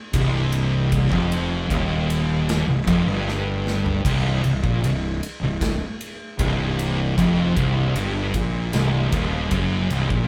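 Sludgy and heavy, this stoner and doom metal excerpt grinds along at 77 BPM in C minor, cut from a longer piece and sitting on a single C minor chord with a straight 4/4 feel. Two thick fuzz guitars play the riff low in the register, one dark and set in the background, the other distorted and up front, while a growly, bright fuzz bass driven through overdrive and tube saturation pushes forward beside them. A big rock drum kit with a punchy kick, medium-tuned snare, toms and bright crash and ride cymbals plays in a big room, throwing in a drum fill from 3.3 to 4.0 seconds, and light reverb gives the feel of a band playing live together.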